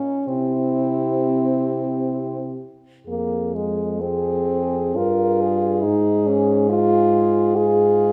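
This classical excerpt for horn quartet is a solemn, elegiac lyrical piece in F minor, moving in a rubato 3/4 at around 61-73 BPM over C, Fm and Fm/Ab harmonies. A background French horn opens the accompaniment at 0.0 s, and at 0.3 s the other three horns join: an up-front melody horn with a mellow tone, light vibrato and a smooth top; a close-miked, warm second line; and a dark, up-front bass horn with light vibrato and a soft attack that still sounds distant and roomy. A moderate recital-hall reverb surrounds the ensemble.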